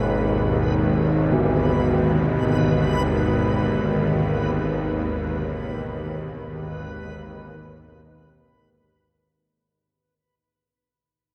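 Unmoored from any pulse, this dark, ominous ambient fragment from a longer piece drifts in free time, all three parts sounding from the start. A low, bowed-like drone sits up front, string-like and nasal, its detuned sawtooth unison carrying a noise layer, vibrato, and a tense, bright edge over a slow attack and long release. Reversed and swelling, a dreamy granular triangle texture hovers high above, softly attacked and sustained. Deep in the background, carillon bells ring out low arpeggios with a bronze, airy tone, a minor-third overtone and the clank of a worn iron clapper, their echoes trailing through delay until they stop at 7.4 seconds. Everything is bathed in a huge, wet reverb, and the texture fades in, with a fade-out from 4.1 seconds, before the passage ends at 9.6 seconds.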